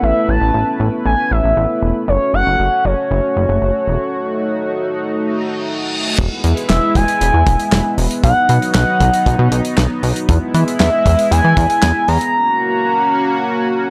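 A smooth, warbling portamento lead sings over a shimmering, detuned pulse-width pad and a glossy, nasal synth bass from the very start of this driving, nocturnal synth-pop cut at 117 BPM, set in a straight 4/4. The lead glides through a melody between C#5 and A#5, its vintage sawtooth and wave-folded tone treated with chorus, vibrato and analog delay. Beneath it the pad holds sustained chords over Aadd9 and F#m with a slow attack and ring-modulated sheen, while the saturated, filter-plucked bass carries the low end. A stop at 4.1 seconds clears space for an electronic reverse cymbal that leads into 6.2 seconds, where a damped 70s drum kit arrives with a tight kick, medium-tuned snare, hi-hat, handclaps and crash, dry and up front, as the chords move through E, B and E. At 12.3 seconds the drums and bass drop out for a brief break on F#, leaving the lead and pad to carry the cut-off to its end at 13.9 seconds, all captured in a dry, gritty hardware recording with light reverb and small room ambience.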